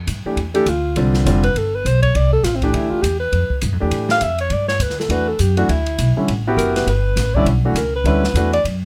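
A mellow alto saxophone solos up front with vibrato, subtone and scooped notes over an open, hypnotic modal jazz swing at 203 BPM that moves from Fmaj9 to Gmaj9 at 4.5 seconds, while a thumpy, woody pizzicato upright bass, an intimate upright piano with audible action noise and long sustain, and an airy small-room drum kit with dark cymbals and a boomy kick fill out this brief cut under light reverb.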